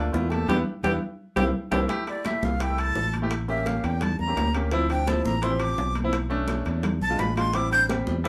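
A bright, breathy metal flute carries the melody from 2.1 s, its crisp, chiffy attack, reedy edge and vibrato sitting up front in this lively, sophisticated Afro-Cuban jazz passage cut from a longer piece. Before it arrives, a mellow tenor saxophone plays a short solo with subtone, scooped notes and a smooth top, stopping at 1.8 s as a drum fill and a band accent lead into the flute's entry. A polished, present grand piano accompanies, and a fingered electric bass adds a growly, direct low end, both placed up front. The congas sound thin-skinned and high-tuned from a distance, while tight, hard-handed bongos and ringing, vintage metal-shell timbales stay in the background. At 170 BPM in straight 4/4, the harmony moves through minor sevenths and altered dominants such as A7b9 and E7b9 before settling on Am7, heard in a moderate studio room with some lossy compression artefacts.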